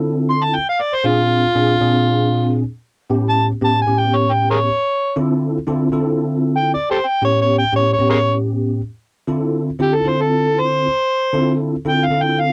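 A bell-like tine electric piano opens this mournful, smoky blues excerpt, its bright, clean chords carrying an ensemble chorus as an overdriven harmonica enters at 0.3 seconds to take the melody. The harmonica plays a gritty, amplified jazz-style solo up front, full of tongue slaps and scooped notes over chords moving from Dm9 through Bb7 and A7 in D dorian at a straight 116 BPM. The dry, close 1970s-style studio sound carries light reverb, and the section repeats at 9.3 seconds before the cut at 12.5 seconds.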